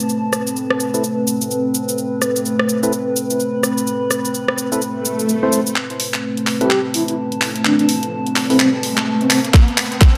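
Bass house with a gritty, bouncy swing, where a deep, moody analog pad and a warbling, lo-fi tape-like pad pump under a garage kit of cabasa, handclaps, hi-hat and rim click, while a hollow, nasal organ stab with cassette grit and delay is filter-swept through the opening, a background swell and riser build from 4.9 seconds, a breathy flute-like lead with vibrato floats in at 6.6 seconds, and a tight, up-front electronic kick lands at 9.5 seconds in a lush hall.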